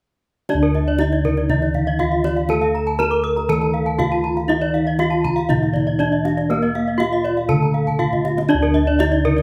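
This hypnotic, shimmering Balinese gamelan passage in D pelog at 120 BPM begins at 0.5 s with a bright, horn-mallet bronze metallophone carrying the melody up front, its paired tuning producing shimmering beats. Beneath it, dark, round bossed gongs hold the bass, and a mellow, airy metallophone struck with padded disc mallets sits in the background alongside a tight kendang. Two close-miked, dry metallophones spin arpeggios high above, the second joining at 0.6 s, and the kendang plays a fill at 7.9 s inside a moderate studio reverb.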